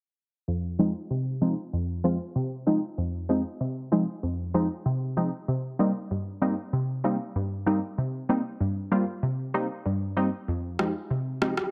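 Sultry and hypnotic, this short dancehall excerpt in F minor at 96 BPM centers on an up-front, punchy chord stab with a detuned sawtooth-and-square bite, chorus, a fast-attack decaying pluck and a filter sweep running throughout, moving from Fm7 to Cm7 and back, while an overdriven, layered electronic rim click joins only at 10.8 seconds, all set in light digital reverb within a dense, heavily limited modern master.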